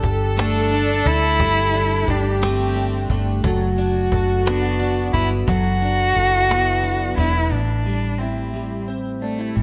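A nasal, boxy solo cello carries the bowed melody with vibrato from 0.4 seconds in this romantic, heartfelt 6/8 pop ballad excerpt at 59 BPM, set over a warm French horn section's second line, a compressed, double-tracked clean electric guitar, a full-bodied jumbo acoustic guitar picking arpeggios in the background through analog chorus and delay, a round, punchy foam-muted fingered bass up front, and a woody, softly handled cajon that drops out at 7.3 seconds, all moving from Gsus2 through D6/F# to Am7 in a bright 1980s-style digital production with light reverb.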